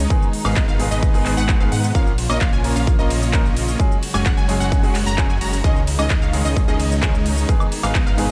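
A euphoric, triumphant slice of festival progressive house opens at once with smooth, bowed strings holding chords in the background, lush plucked arpeggios trailing digital delay, a huge, thick supersaw riff also echoed by delay, and a beating, menacing detuned saw bass, all pumping against the sidechain. From 0.1 seconds a clear grand piano adds delayed accompaniment while a punchy, tape-warm electronic kick sits up front beside a big-room kit of crisp hats, handclaps, ride, shaker and woodblock re-recorded in a large room. The harmony moves through G#m, A#m, F#sus2 and C#sus2 before returning to G#m, with the kick dropping out at 8.0 seconds in this dry, loud mix.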